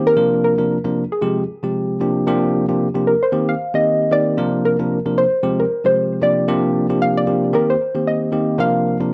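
Afrobeats at 114 BPM in C minor, hypnotic and mellow, with a 16th-note swing that gives this short cut from a longer piece a relaxed sway. A soft, round pluck with chorus carries the melody up front, its dark, detuned, decaying tone sitting over a bell-like tine electric piano that plays bright, clean accompaniment over a cycling Bb/C, Fmadd9/C, Gm7/C, Cm7 progression. Both parts play throughout the 9.1 seconds, set in a moderate studio reverb and captured as a home recording on cassette.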